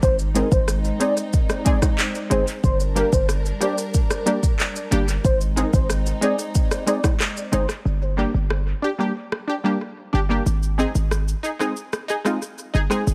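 A heavy, hard-hitting 808-style bass anchors this bouncy, tough dancehall excerpt, joined by a tape-warm afro-pop drum kit with a deep kick, handclaps, rim click, shaker and smooth hats, a bright, detuned chord stab with ring-modulated sawtooth bite from 0.3 seconds, a velvety, gliding synth lead melody, dark bowed studio strings pumping beneath it, and ringing maracas and timbales in the background, until the lead, strings and hand percussion fall away just before 7.9 seconds, leaving a break from 7.9 seconds carried by bass, drums and stabs in an echo-heavy digital ambience.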